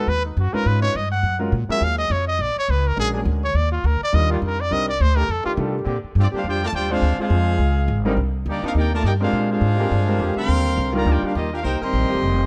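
Swinging in 4/4 at 208 BPM, this joyful, brassy big band jazz excerpt in Bb major opens with a clear solo trumpet with light vibrato over an intimate grand piano with audible action noise and a woody, growly pizzicato upright bass up front, with sustained trombone section chords joining at 1.7 s. The solo ends at 5.5 s, a present trumpet section takes the melody at 6.2 s alongside a second trombone line in the background, and the piano drops out at 11.3 s, all within light reverb.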